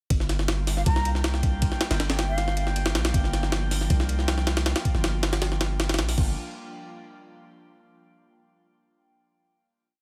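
Nostalgic yet frenetic, this short drum and bass and jungle piece drives a heavily chopped, pitched-up breakbeat with a thumpy kick and high-tuned snare up front beside deep, long gliding 808-style bass notes over a single Gm7, while an airy, detuned pad with gritty sampler character, a glassy held high note with drifting overtones, and a breathy, mellow flute playing short phrases with dub echo from 0.8 to 2.7 seconds sit in the background before a final chord at 6.2 seconds.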